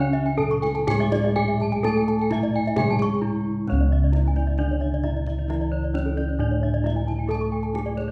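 Set at 132 BPM in 4/4 with uneven beats, this Balinese gamelan excerpt moves in a shimmering, hypnotic pelog mode centred on C#, tuned slightly above standard pitch. Bronze metallophones carry a melody in the middle register and an accompaniment an octave below, while two higher metallophone parts spin out arpeggios. Some are struck with wooden mallets and others with bright horn mallets, and several ring with the beating shimmer of paired tuning. One has a vintage, band-limited character, and another sounds airy. Bossed gongs anchor the bass, round and up front, while a tight kendang enters at 0.3 seconds and sits distant in the background with hard hand strokes. A brief break between 3.0 and 3.7 seconds sets off the opening passage from the next, all heard in a moderate recital-hall reverb.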